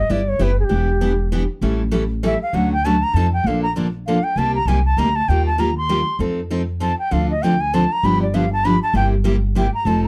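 A swung 3/4 pulse at 197 BPM drives this lively, playful fragment of acoustic string swing in the jazz manouche style, moving from D major into Bb major at 3.5 s. An airy, reedy bamboo bansuri carries the melody as a solo throughout, with vibrato and a soft attack, over a woody, thumpy pizzicato upright bass on gut strings and a bright steel-string dreadnought guitar picking out the chords from 0.1 s. All three sit up front in a dark production with light reverb.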